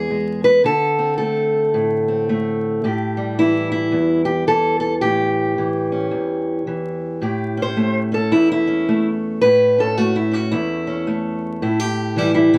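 A dark, boxy fingerpicked parlour steel-string acoustic guitar sits up front in this laid-back, gritty acoustic country blues fragment in A mixolydian at 109 BPM in a swung 4/4, moving from E through D5 to A7 before stepping into a solo at 7.2 seconds, all captured with close, detailed microphones, light reverb and a layer of vinyl crackle.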